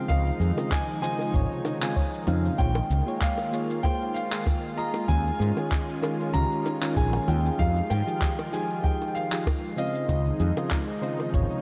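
A dark, round fretless electric bass sits up front in this relaxed sunset chillout excerpt, anchoring a gently swung groove in 4/4. A deep, analog-flavoured electronic kick drum enters alongside it, together with gritty, overdriven shaker and handclaps and very quiet, tight, high-tuned bongos played close and dry. An intimate concert grand piano with audible action noise carries the melody through an analog delay until about 10.7 seconds, above soft, chorused electric-piano-like synth keys trailing a diffuse ambient delay. A thick, warbling vintage unison pad holds sustained chords underneath, while a faint, detuned, wave-folded pluck adds arpeggios from 0.4 seconds. The harmony moves through Dbmaj9, Bbm7, Eb9sus4 and Fm9 before returning to Dbmaj9, and a lush hall reverb soaks the whole mix in a dreamy haze.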